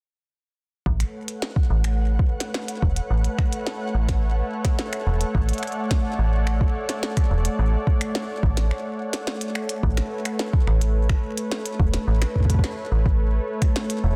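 IDM fragment with a glitchy, playful mood, where a smooth, detuned sawtooth pad with chorus holds sustained chords over a metallic, decaying FM bass and an overdriven soft kick, both up front, while a glitchy kit of tiny snare, clicky hats and finger snaps adds delay and reverb and a flickering granular texture sits in the background through a break at 8.7 seconds, dropping out at 9.8 seconds.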